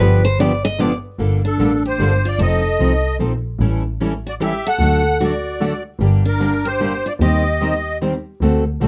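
Close, detailed microphones and a light reverb give this short cut from a longer piece of acoustic string swing in the jazz manouche style an intimate, present sound. It moves at 150 BPM in 3/4 with a swung eighth-note feel in G minor, and the mood is bittersweet yet swinging. Three picked steel-string acoustic guitars play in concert style: a bright one carries a second line, while two others, one warmer and the other bright and set lower in the mix, supply the accompaniment, and a guitar solo fills the opening second or so. Underneath, a rich, focused double bass is bowed with vibrato by a single player, sitting up front. At 1.5 seconds a musette accordion takes the melody with a reedy, shimmering tone, also placed up front. The chords pass through G7, Gmadd9, F7, A7, D, Gm and Eb6.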